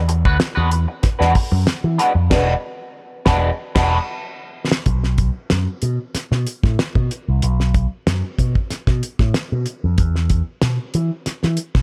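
A straight, steady four-count groove drives this funky, hypnotic clip, cut from a longer piece and recorded dry. A dark, damped drum kit with a fat snare, tight kick and dark cymbals sits up front, while a picked electric bass, warm and amped, pushes its line through an envelope filter from the opening moment. An electric guitar at the edge of break-up, twangy and fingered, adds wah and a subtle chorus over an E9 chord, then drops out at 4.0 seconds. The band hits a shared accent from 2.3 seconds, capped by a drum fill that leads into a new section at 4.9 seconds. From there, bass and drums carry on alone over B5 and E5 harmony.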